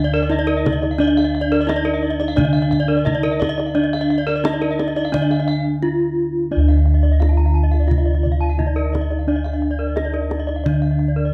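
A dark, lightly reverberant production frames this short Balinese gamelan passage, cut from a longer piece, with a shimmering, brilliant mood over a straight 4/4 pulse. Three bronze metallophones struck with horn mallets ring throughout, each in paired tuning so their tones carry shimmering beats. The melody metallophone sounds dark and smooth, one arpeggio metallophone sounds bright and airy, and the other has a boxy, small-room colour. Bossed gongs played with padded beaters carry the bass up front, round, mellow and full, close-miked and dry, with their beating bronze tones the most prominent voice. A tight kendang enters at 0.7 seconds and plays along in the background until 10.8 seconds, while the metallophones and gongs continue to the cut at around 11.3 seconds.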